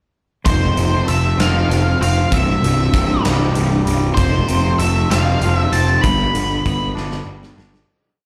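Twangy, clean electric guitar arpeggios open at 0.4 seconds, joined almost at once by a dark octave-fuzz lead guitar playing hook-like phrases, a growly overdriven picked bass driving eighth notes up front, and a punchy big rock drum kit in a bright stone room, forming a bittersweet, restless pre-chorus of quiet-loud alternative rock in 6/8 at 64 BPM over F, C, F and G, heard as a live club gig through the venue's PA with slapback and tape echo on both guitars, until the piece fades out from 6.0 seconds and the drums close with a fill at 7.0 seconds.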